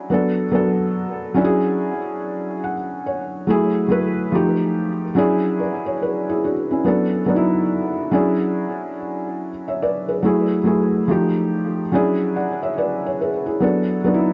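A felt-muted upright piano, soft and intimate with its action noise audible up front, plays alone through this reflective, hazy hip hop fragment cut from a longer piece, moving over a swung 16th-note feel through lush chords like Bm7/F#, E13/F# and F#m9, adding a brief fill at 2.2 seconds, and colored by a low-pass filter, tape echo and moderate studio reverb in a dark production.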